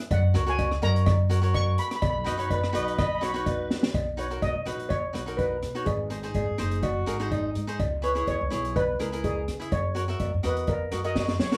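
A lightly swung 125 BPM calypso groove in 4/4 and B major, driven by an up-front street-band drum kit with a boomy kick and high-tuned snare, a small-room cowbell, and a thumpy, woody pizzicato upright bass, sets a carefree, festive mood in this excerpt. A crisp, bright cavaquinho picks out the accompaniment while a shimmering lead steel pan, played with medium rubber sticks, carries the melody and takes a solo from 3.9 s over chords moving from Bmaj7 through G#7, C#m7 and F#7. A breathy, whispered alto saxophone adds an intimate second line between 2.3 and 7.9 s, and drum fills mark 3.7 s and the final moments, all set in a modest small-room ambience.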